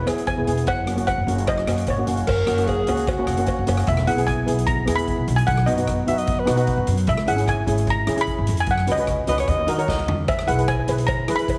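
A lead steel pan opens this festive, sunny calypso on its own, ringing out a bright, shimmering melody struck with hard rubber sticks at 150 BPM in a straight 4/4. Almost at once a second pan of the double-seconds type, airy and up front, joins with accompaniment under medium rubber sticks, alongside a woody, thumpy pizzicato upright bass on steel strings and a street-band drum kit with a boomy kick, medium-tuned snare and dark cymbals in a polished, big-room sound. A close cowbell sits in the background at first, drops out at 3.8 seconds and returns after a drum fill near the end. From 2.3 to 10.2 seconds a clear alto saxophone adds a jazz-style second line with vibrato, moving through changes that run from E and F# through B, C#m7 and D#m before settling back on E. The whole cut carries a heavily compressed, radio-like sound inside a moderate recital-hall reverb, and it is taken from a longer piece.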